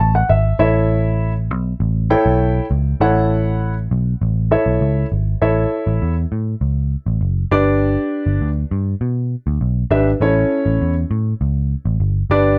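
Uplifting and danceable, this short cut of uptempo 1960s-style soul moves at 100 BPM in a straight 4/4, centered in A mixolydian. A concert grand piano carries the accompaniment up front, its tone rich with deep bass and lifted by plate reverb, and it opens with a brief fill before the groove settles in at 0.6 seconds. Beneath it, a vintage muted picked electric bass plays throughout, sounding round, punchy and amped, its foam-muted tone sitting close to the listener. The harmony rests on A before shifting to G at 7.5 seconds and returning to A at 10.2 seconds, as the music moves into a new section partway through. The overall production is dark and warm, with a light touch of reverb.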